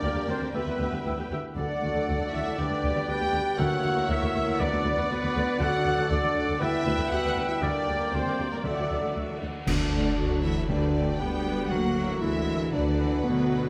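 Mellow trumpet stabs and dark French horn chords lead this triumphant, adventurous heroic film-score cue at 118 BPM in D major. Lush vibrato violins carry the melody over a second violin line, airy flutes, a distant clarinet, a smooth oboe, rich violas, tight trombones, a ringing fingerpicked harp, and a bass of warm cellos, woody double basses and tuba. Soft-mallet timpani strike briefly at the start and return from 3.6 to 11.4 s. Bright clash cymbals, a cymbal swell and concert bass drum arrive at 5.6 s, while the brass, flutes and oboe fall away between 9.2 and 9.4 s, all heard in a moderate scoring-stage reverb.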